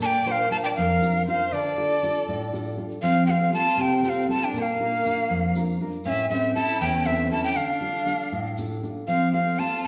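Andean folk with a festive, earthy feel in 6/8, this excerpt puts a breathy, close-miked cane quena up front on the melody with vibrato and a tongued chiff, while a rich, distant bowed violin traces an expressive second line with portamento, a dark, full-bodied nylon-string guitar carries the accompaniment, and a grainy, bright tube shaker sits quietly in the background, the ensemble ringing in the reverberant space of a recital hall.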